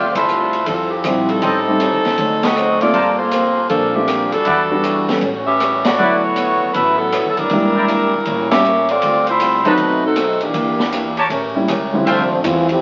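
Big band swing jazz in D minor, this brassy, swinging passage moves at 158 BPM in 4/4 with swung eighth notes, cut from a longer piece and heard through the crackle of a very old 78 rpm record in a wet studio reverb. An up-front saxophone section carries the melody with a smooth top and a loose ensemble feel, while a tight trumpet section with light vibrato and a vintage tone punches out stabs, the full band hitting accents at 0.1, 2.4, 5.8 and 8.4 seconds. Beneath them a concert grand piano adds intimate accompaniment with deep bass and audible action noise, a dark, boxy picked acoustic guitar sits in the background, and a woody, thumpy pizzicato upright bass anchors the low end. The drum kit sounds distant and roomy, with a punchy kick, medium-tuned snare, rim clicks, hi-hat and ride cymbal driving the swing. Rich harmony such as Dm11, D7b9, A13 and B7b9 colours the progression, and at 12.1 seconds a bright, close-miked trombone section with vibrato enters on a second line just as the passage cuts off.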